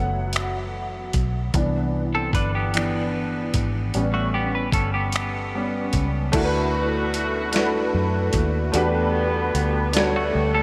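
Intimate and warm, this slow six-eight R&B excerpt at 50 BPM in D major pairs an up-front grand piano carrying chords from Gmaj9 through Cmaj7 and A9 with a dark, round, foam-muted vintage electric bass and a gritty, thumpy sampler-style drum kit of kick, snare, hi-hat, finger snaps and crash, while a clean semi-hollow guitar with subtle chorus and tape echo adds a second line from 2.1 seconds, and clear jazz-style horn stabs with light vibrato arrive at 6.3 seconds over D69 and Em11, all bathed in a dreamy, reverb-soaked ambience.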